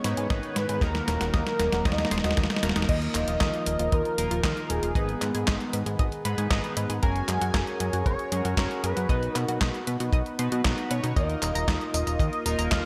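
Italo disco excerpt, melodramatic and bittersweet, where a bold, detuned unison lead with lush chorus and tape echo carries the melody over a smooth pad, a round chorused pluck arpeggio that opens with a filter sweep, glossy polysynth stabs, a fat saturated bass, a dry tight kick entering at 0.3 seconds, and a tape-warm 8-bit drum machine with gated reverb that starts with a fill before the chords move into a new progression from 2.9 seconds.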